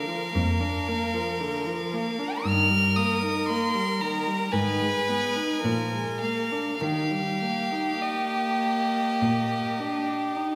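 Serene and lyrical, this excerpt from a slow romantic string quartet movement in Eb major unfolds at 50-58 BPM in 4/4 with a rubato feel, tuned to A4 = 436 Hz. Up front, the first violin sings a pure, floating melody bowed sul tasto with a soft attack, while the second violin adds an intimate, airy second line with light vibrato, and the viola's close, gentle accompaniment shares that breathy bowing. The cello enters at 0.4 s with a distant, pure bass line and falls away at 10.2 s, all set in a recital hall's lingering reverb as the harmony moves from Bb through a shadowed Abm and Bb7 to settle on Eb.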